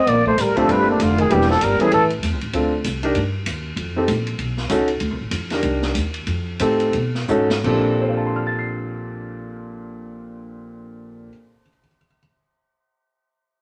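Relaxed and sophisticated, this small-group swing and bop fragment in Bb major moves at a brisk 165-195 BPM with a swung feel. A plunger-muted trumpet with wah-wah color, light vibrato and scooped notes carries the melody up front, while a veiled, distant bucket-muted trombone adds a second line; both drop out at about 2 seconds, leaving woody, thumpy pizzicato upright bass, a warm baby grand piano, and a natural studio drum kit with a high-tuned snare and punchy kick. The tempo slows from 5.0 to 7.6 seconds, a drum fill closes that passage before the kit falls silent, and a wet studio reverb surrounds the group.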